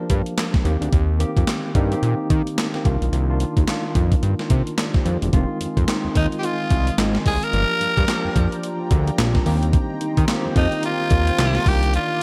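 Confident and punchy, this excerpt of new jack swing R&B moves at 109 BPM in 4/4 with a 16th-note swing, set in F dorian. A gated 80s digital drum machine drives it from the start with a thumpy kick, gated-reverb snare, handclaps and hi-hat, its tape-tinged, sampler-style sound sitting up front alongside a fat, saturated analog bass built from detuned sawtooth tones with an evolving filter sweep. A barky tine electric piano supplies clean accompaniment through its built-in speakers over chords moving from Gm7 through Eb6 and Cm11, shifting to Fm7 when the second section arrives at 5.3 seconds. A swirling, vintage analog pad joins at 5.7 seconds in the background, its slow-attack chords warbling with phaser and chorus. At 6.2 seconds a raspy tenor saxophone takes the melody up front, gritty and edgy with pop-style vibrato. The mix is dry, with little reverb beyond the drums' gated treatment.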